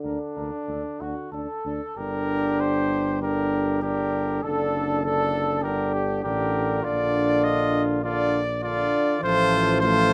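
Bathed in light reverb, this excerpt of a noble, warm classical brass quintet unfolds at a rubato 99 BPM in G minor, with a mellow trumpet carrying the melody up front with vibrato and a soft attack over a second trumpet line, while a clear French horn and a distant, roomy trombone with light vibrato sit in the background and a smooth-topped tuba anchors the bass up front as the harmony moves from G minor through D/F# to Bb and F/A.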